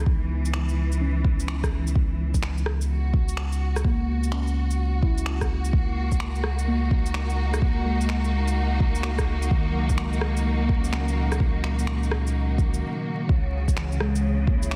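A swung 4/4 future garage groove, cut from a longer piece, puts a deep, tape-warm electronic kick up front beneath layered electronic shaker, finger snaps and rim click with soft clipping on the snare, while a round, soft dub sub bass pumps to the sidechain, muted felt-like synth keys with chorus and digital delay lay down a dark, intimate, decaying accompaniment, and a distant, lush bowed string section sustains vibrato-laden harmony moving from C#m9 to F#6/C#, all over a dense master with vinyl crackle that gives a rainy, ghostly mood before a brief break at 12.8 s.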